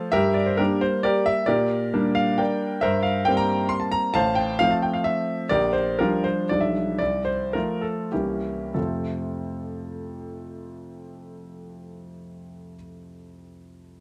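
A clear, intimate solo grand piano, up front with audible action noise and long sustain in a light reverb, plays a proud, rustic romantic classical dance in triple time with dotted rhythms and rubato, slowing from 4.8 to 8.8 seconds before settling on an F major chord as a new section begins, all taken from a longer piece.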